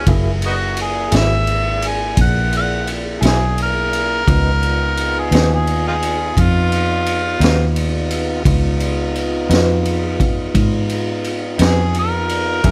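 A warm overdriven harmonica takes a laid-back solo with scooped notes and tongue slaps over a slow 12/8 blues in Db mixolydian at 57 BPM, carried by a dark, round, foam-muted bass, a boomy, saturated garage drum kit with a high-tuned snare, clean tonewheel organ chords through a slow rotary speaker, and a lo-fi, slightly broken-up guitar with tremolo in the background, moving from Gb9 to Db9 at 4.3 seconds in this short cut from a longer piece.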